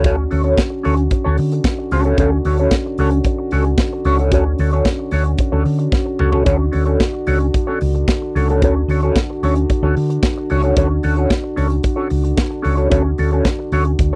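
This celebratory disco excerpt opens at once on a Dmaj7 chord, with drums, bass, guitar and French horns all sounding from the start at a danceable 112 BPM in straight 4/4, in D major and tuned slightly sharp to A4 = 443 Hz. A modern acoustic drum kit sits up front, with a punchy kick, a medium-tuned snare, hi-hat and toms, and a polished, airy small-room character. A brief drum fill from 5.9 to 6.5 seconds is the one clear event. A hollow-body short-scale electric bass, picked and amped, adds a dark, round low end that is the loudest part of the mix. A mellow, clean electric guitar carries the accompaniment in its middle register, coloured by wah and phaser. Behind them, a French horn section holds sustained chords with a soft attack, light vibrato and a classical ensemble tone, all captured in a dry, close 1970s-style studio sound.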